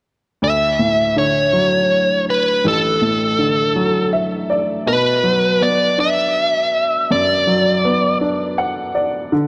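From 0.4 seconds, a bluesy, dark and distorted electric lead guitar, picked up front with delay, carries the melody over a clear, woody upright piano in this heartfelt, swaying 6/8 pop excerpt, with the piano adding fills at 3.8 seconds and again at 8.2 seconds as the guitar falls silent, the harmony moving from Dadd9 to Bm in a moderate echo-chamber reverb.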